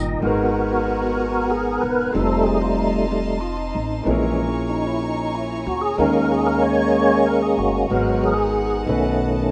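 This fragment of a longer piece has the rough, lightly reverberant sound of a home demo, with a dulled top end. It is a slow gospel piece in 6/8 with a straight feel and a fervent, solemn mood. A fat, clean tonewheel organ sits up front, opening with a short fill before taking a solo from 0.2 seconds to the end, its key click, slow rotary speaker and chorus vibrato colouring the sustained chords. Beneath it, a clear, intimate concert grand piano accompanies with a boxy tone, deep bass, long sustain and audible action noise, while a woody, thumpy pizzicato upright bass anchors the low end. From 0.2 seconds a bowed studio string section adds quiet sustained chords with light vibrato and an intense ensemble edge. The harmony moves through G#m9, F7, A#m7b5 and D#7sus4, back to G#m9 and on to B7.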